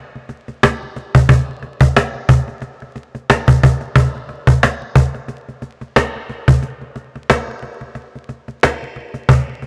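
A swung 90 BPM hip hop groove in 4/4 rides on a lone woody cajon with faint snares, close, dry and up front from 0.2 seconds, reaching a break at 6.6 seconds in this soulful fragment of a longer piece, whose blown-out, overdriven recording carries vinyl crackle and a light small-room reverb.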